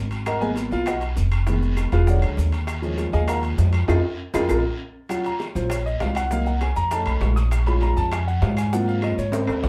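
A warm, up-front grand piano solos across this fiery, sophisticated Afro-Cuban jazz excerpt in Eb minor at 198 BPM, over dark, woody pizzicato upright bass, ringing metal-shell timbales, high-tuned bongos, and background claves, raspy guiro and grainy maracas, with drum fills at 3.9 and 9.3 seconds, all set back in a club-like reverb.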